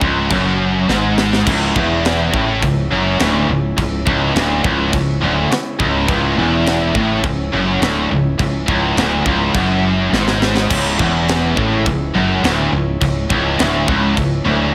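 A growly, round fretless electric bass with a woody, hollow-body tone and punchy attack anchors this heavy, epic heavy metal excerpt at 104 BPM in 4/4, set in C# phrygian over a C# minor chord. Behind it, two scooped, high-gain guitars with bright distortion and a double-tracked, biting overdriven guitar play a picked riff in a low register. A tight acoustic drum kit, with a high-tuned snare, a tight kick, and china and crash cymbals, sits mid-forward in a studio room and plays fills, one of them at 10.1 s. From 1.5 s, a pipe organ with light, sparkling flute stops holds sustained chords in a baroque voicing, sitting in the background. The whole piece is bathed in a small room reverb, and the drums drop out at 14.3 s while the other parts ring on to the end of the cut.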